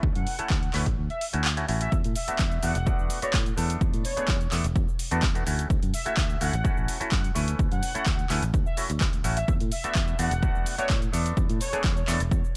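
This filtered disco house excerpt moves at 127 BPM in a straight 4/4 with a feel-good, funky mood, shifting between Dmaj9 and E7sus4. An overdriven electronic kick sits up front with a large-room character and briefly drops out from 1.0 to 1.9 seconds. A punchy analog drum machine adds overdriven handclaps, hi-hat and shaker, with the hats and percussion pumping against the kick. A faint tambourine enters at 1.9 seconds. A round, foam-muted fingered electric bass and a twangy, stringy clav with phaser both pump under a low-pass filter. Above them, a fat, detuned sawtooth synth brass carries the melody with chorus, vibrato, cassette tape colour and digital delay, while the overall sound stays quite dry.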